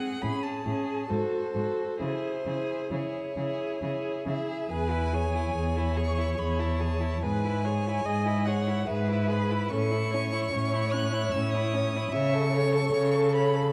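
Two bowed violins and a viola open this solemn, elegiac slow movement for string quartet together, the first violin singing a smooth, rich-toned melody with vibrato high above an expressive second line that glides with portamento from a distance, while the viola fills in an even accompaniment. The cello joins at 0.2 s with a smooth, even bass line as the music moves through C# minor in a rubato 3/4 at around 66-76 BPM, then turns to E major at 4.7 s. A reverberant recital hall gives the dark, warm production its long tail; the passage is cut from a longer piece.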